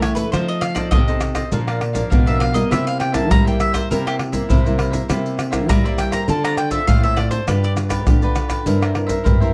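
Samba and choro in a sunny, festive mood at 101 BPM, this excerpt features a bright, double-strung bowl-back mandolin carrying the picked melody until 7.7 seconds, over a crisp cavaquinho, a full-bodied fingerpicked nylon-string guitar with audible finger squeak, and a second nylon-string guitar holding the bass in the background. Pandeiro, tamborim, maracas and a deep surdo sit close and up front, while the harmony moves through chords such as F7, Bb, C7, Dm7 and G7. Light reverb and a dark production give the acoustic ensemble an intimate glow.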